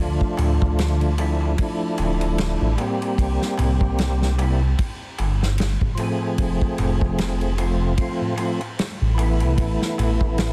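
Cinematic and brooding, this trip hop excerpt at 75 BPM with a lightly swung 16th feel rides a deep, rumbling detuned saw bass and a percussive tonewheel organ, lightly overdriven with chorus vibrato, a stopped rotary speaker, harmonic tremolo and tape echo, over the chords Dmadd9, C7, F and Asus2, while a punchy, small-room acoustic drum kit of kick, snare and ride enters at 0.2 seconds and a crisp metal-shell darbuka sits distant in the background, all within a dense, heavily limited master dusted with vinyl crackle.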